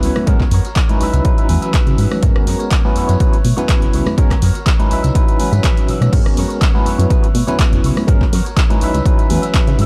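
A barky, overdriven tine electric piano with tremolo, phaser and sampler grit opens this sensual, nostalgic filtered disco house excerpt at 123 BPM in G# minor alongside a plucky sawtooth bass, a bright, twangy envelope-filtered electric guitar riff with spring reverb, and a tape-tinged analog drum machine of crash, handclaps, hi-hat and rim click, while congas and tambourine slip into the background at 0.2 seconds and an up-front punchy electronic kick lands at 0.3 seconds, the piano, guitar, bass and hand percussion all pumping under a low-pass filter in a dark, dry mix over a G#m11, C#m11 and F#7sus4 progression.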